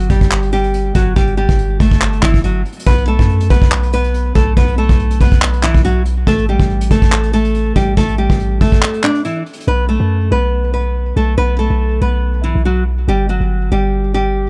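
A bright, fingerpicked nylon-string guitar melody with delay leads this eerie, melancholic half-time trap cut at 141 BPM, over a deep, boomy sine 808 bass and an up-front vintage brush kit of punchy kick, hi-hat and handclaps with a rolled-off top, moving through Gsus2, B5 and A5 in a dark small-room production tuned to A4 = 438 Hz, until a break at 8.8 seconds and the drums dropping out at 9.7 seconds leave guitar and bass to carry the B5 passage before the chords fall away at 13.1 seconds.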